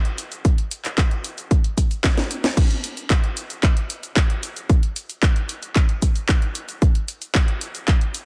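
Italo disco drum excerpt in a straight 4/4 with a bittersweet, danceable mood. A house drum kit of cabasa, crash cymbal, handclaps, hi-hat and a cracking snare sits up front beside a punchy electronic kick that enters at 0.4 s, both layered, tape-warm and re-recorded in a small room. A drum fill at 2.0 s leads into a new section at 2.6 s, and the mix carries light reverb and a heavily compressed, radio-like sound.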